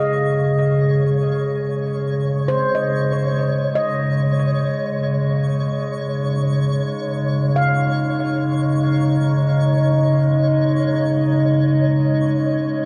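Soaked in plate reverb and heavy echo, with lossy compression artefacts, this peaceful, serene ambient excerpt rests on a single sustained chord. An up-front, warbling tape-like pad with chorus carries nostalgic, detuned chords over a very quiet, evolving analog drone. A mellow handpan rings out soft, meditative arpeggios through dub echo and shimmer reverb until 10.1 s, while a sparkling granular texture with an octave-up shimmer fades in across the full 12.9 seconds.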